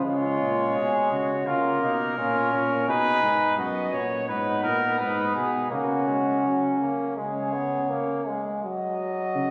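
Serious and driving, this fragment of a classical imitative canzona for brass ensemble moves at 84 BPM in a straight 4/4, with an up-front mellow trumpet carrying the melody over a warm flugelhorn second line that drops out at 8.2 s, a brilliant trombone accompaniment also placed up front, and a dark, close-miked bass trombone with vibrato anchoring the bass, the three upper horns sounding distant and roomy through a wet concert-hall reverb, club reverb and compression, all captured on a phone in the room as the harmony moves from C# toward a closing F#5.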